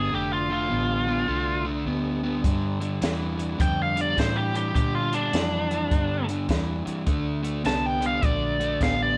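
Mournful and smoky, this short cut from a longer electric blues shuffle moves at 104 BPM in 4/4 with a swung eighth-note feel, set in D minor. A bright, biting lead guitar with overdrive carries the melody up front from the start, ranging from D4 to A5. Beneath it, an overdriven semi-hollow guitar plays a riff in a lower register with a picked, hollow-body tone, while a vintage fingered electric bass, foam-muted and round, anchors the low end. A compact cocktail drum kit joins at 2.4 seconds with hi-hat, punchy kick and a high-tuned snare, its sound smooth with a rolled-off top. The harmony moves from Dm7 to Gm7 at 2.4 seconds and lands on D7(no3) at 7.1 seconds, all captured as a band playing live in one room with light reverb.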